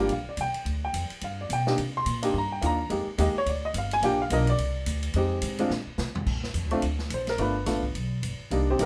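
A worn, intimate baby grand piano carries the melody from the first moment, sitting up front with audible action noise and short sustain, over a woody pizzicato upright bass in this relaxed, swinging jazz piano trio fragment cut from a longer piece. A big-band drum kit joins at 0.1 seconds with ride, hi-hat, a medium-tuned snare, punchy kick, crash and toms in a natural studio room, and plays a fill from 5.7 seconds. The piano's solo then starts its theme again at 6.3 seconds, moving through minor seventh, suspended and sixth chords to a closing G7, all set in moderate studio reverb.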